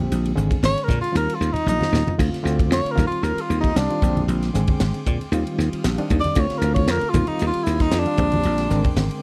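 Slick and bright, this brief cut from a longer electric jazz fusion piece rides a lightly swung groove, with a mellow, breathy tenor saxophone soloing up front from 0.7 seconds, its scooped notes and vibrato carried by a slapback echo. A growly, punchy thumbed slap bass and a tight funk drum kit with bright cymbals and a high-tuned snare drive the rhythm, including a fill at 1.7 seconds. Very quiet, low-tuned congas and a gritty, overdriven reed electric piano with medium tremolo fill out the accompaniment, and from 2.2 seconds a faint, airy pad with chorus sustains chords beneath, captured in a dry, close 1970s-style small room.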